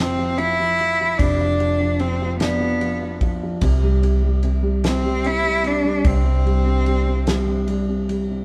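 A clear, focused cello carries the melody up front with a bowed vibrato, playing until 7.7 seconds in this romantic, heartfelt six-eight pop ballad in C major, moving at a slow 49 BPM and cut from a longer piece. Underneath, a felt-muted upright piano gives soft, intimate, boxy accompaniment with audible action noise, while a hollow-body short-scale electric bass adds a round, punchy, dark line. A damped 70s drum kit enters at 0.4 seconds with a tight kick, fat snare and dark ride cymbal, its top rolled off, and the band plays live together in a moderate stone room as the harmony moves from F5 to C5.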